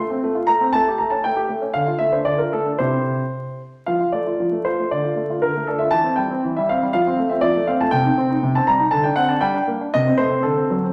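A baby grand piano, up front and natural in tone, carries this short classical-period sonatina alone from start to finish, spanning C3 to C6. The mood is elegant yet restless, set in F major at 118 BPM in 2/4, with a rubato feel that lets the pulse breathe and stretch. Its opening phrase moves through F/A, A7, Dm and C before a second section begins at 3.9 seconds, returning to F and passing through Dm and C/E. From there the harmony darkens with a turn to Cm, D7 and Gm, closing on Adim/C at 9.9 seconds for an unsettled finish. A wet recital hall reverb surrounds the instrument, while a vinyl crackle adds an aged patina, and the tuning sits slightly below standard at A4 = 438 Hz. The clip is cut from a longer piece and runs just under 11 seconds.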